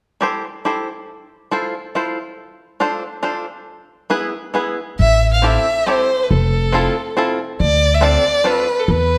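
A straight 3/4 lilt at 139 BPM drives this whirling, nostalgic musette waltz in A minor, where a twangy, percussive bluegrass banjo played with fingerpicks opens alone at 0.2 s, comping through Am7, Fmaj7, Dm7 and E, until at 5.0 s an expressive, up-front bowed violin takes the melody with vibrato, portamento, a soft attack and a slapback echo, joined at that moment by a woody, thumpy pizzicato upright bass, the trio ringing in a moderate recital hall reverb.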